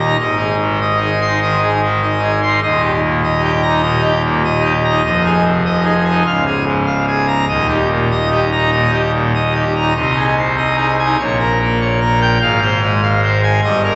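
Bathed in a wet church reverb with a three-second decay and rolled-off highs, this jubilant, majestic fragment of a classical organ toccata in Ab major at 98 BPM features a solo pipe organ on full organ, placed up front, its brilliant mixtures and romantic voicing spanning from Db1 to C6 as the harmony moves from Ab through Eb and Fm7 before settling on Fm/Ab at 12.4 seconds.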